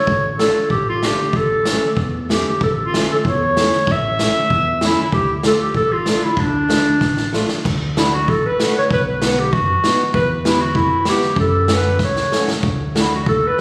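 Captured on a phone in a concert hall with a moderate reverb, this festive, jolly excerpt from a longer alpine folk dance tune moves at 96 BPM in a loose, rubato 2/4, shifting from D harmonic minor to D major at 7.7 s. An up-front, classical-style clarinet carries the melody with a clear, roomy tone and a touch of delay, while a boxy, bright fingerpicked archtop guitar with audible finger squeak plays the accompaniment. A round, deep synth bass anchors the low end, and an airy, polished street-band drum kit with a boomy kick and dark cymbals adds fills at 7.0 s and 12.0 s.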